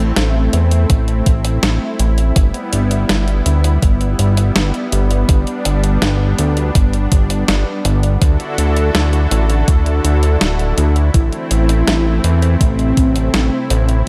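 Synthwave at 82 BPM in A dorian, nostalgic and driving, where a lush, nasal sawtooth pad with chorus and sidechain pumping holds sustained chords from Am through Em/G, G and Dadd9 over a fat, saturated analog bass up front, a thumpy overdriven electronic kick entering at 0.9 seconds, a 12-bit drum machine's medium-tuned snare and hi-hat re-recorded in a large room, and a bold, mellow unison lead with vibrato and digital delay arriving at 11.1 seconds in this dry cut from a longer piece.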